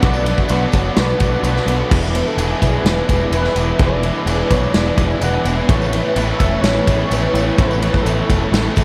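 A straight 4/4 pulse from an up-front big rock drum kit with a tight kick and a faint vintage tambourine drives this dreamy, wistful shoegaze and dream pop excerpt, where a growling overdriven bass sits forward beneath three riffing electric guitars (one bright and double-tracked with distortion, one overdriven with lush chorus, one very quiet and lo-fi through a small old amp), while a shimmering octave-doubled twelve-string acoustic guitar fingerpicks arpeggios, a retro phased pulse-width pad sustains chords, and a round, gentle FM synth lead carries the melody with chorus and analog delay, all bathed in a huge ambient reverb over a Bm7, E7, Aadd9 progression.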